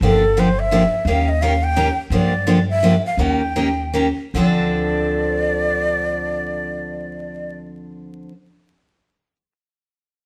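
Swung eighths in a lilting 3/4 drive this bittersweet, virtuosic stretch of acoustic string swing in the jazz manouche style, in D minor and moving between 146 and 172 BPM, slowing down from 2.1 to 4.3 seconds before landing on Dm7. Up front, a breathy bamboo shakuhachi carries the melody with vibrato and a soft attack until 7.6 seconds, beside a bright, full-bodied picked steel-string dreadnought guitar whose fresh strings give off finger squeak. Underneath, a woody, thumpy pizzicato upright bass anchors the band, which plays live together in a moderate stone room touched by vinyl crackle.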